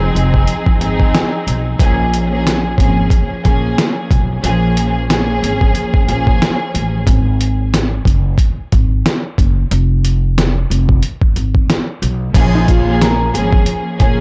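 An overdriven, pitched-down sampler-style drum kit with a thumpy kick and muffled, compressed snare and cymbals sits up front in this moody, gritty boom-bap hip-hop excerpt, which swings over a woody pizzicato upright bass. A dark, lush bowed string ensemble with vibrato and tape echo drops out at 6.9 seconds and returns at 12.3 seconds. A clean, fingered electric guitar with lush chorus and tape echo then adds a brief melody from 12.6 seconds, all in a dry, echo-heavy mix.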